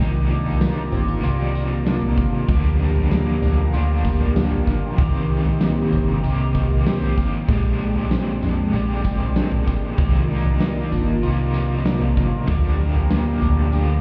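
A straight 4/4 pulse at 96 BPM drives this haunting, hazy dream pop excerpt in C minor, where a huge arena drum kit with a fat snare, punchy kick and bright cymbals enters at 0.5 s over a dark, round, foam-muted bass up front, while an overdriven stack guitar with tremolo and lush chorus carries the accompaniment, slightly broken-up electric guitar arpeggios with delay sit in the background, and a swirling, detuned sawtooth pad with phaser holds sustained chords, the whole mix sounding muffled as if heard through a wall, bathed in club reverb.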